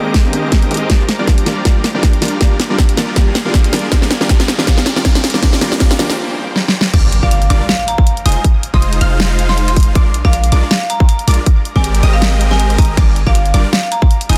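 Driven by a swung, half-time 159 BPM pulse from a hard-clipped electronic kick and a fat, layered pop kit with snare, hi-hat and crash, this playful, euphoric future bass excerpt pairs a deep, boomy 808-style bass and huge, detuned supersaw chords with a felt-muted upright piano and a shimmering, ethereal pad through the build-up, where a very quiet riser leads to a brief break before the drop at 6.9 seconds brings in a lush background pluck arpeggio and a bright marimba melody struck with hard mallets, all pumping against the kick over a dense, heavily limited master.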